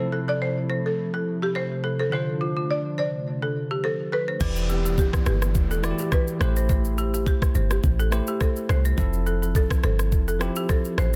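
A lightly swung sixteenth-note groove in 4/4 carries this sultry, smooth afrobeats excerpt, where a buzzing, woody marimba with tape echo sings the melody over bell-like electric piano chords, a dry, close-miked balafon riff, and a hollow, flute-like pad with chorus and a pumping pulse. At 4.4 seconds the pad drops away as a deep, round log drum bass and an up-front electronic drum kit with a knocking kick, rim clicks, shaker and crash enter. A downlifter sweeps in the background beneath the dense, heavily limited modern mix.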